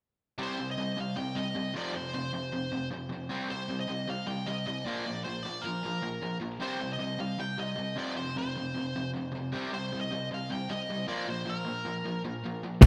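Angry and urgent, this punk rock passage is cut from a longer piece and charges forward in a straight 4/4. From 0.4 seconds, a nasal lead guitar with a parked wah carries the melody, its overdrive trailed by a digital delay. Beneath it, two electric guitars pick out the riff in the low register: one crunchy, the other bright with a slapback echo. They move through a cycle of C minor, F5, C5 and B-flat power chords and triads. At 12.8 seconds, a brief burst arrives: a double-tracked fuzz guitar, a growly picked bass and an up-front acoustic kit with a punchy kick and a crash cymbal sounding in a stone room. The whole sits in light reverb and small room ambience.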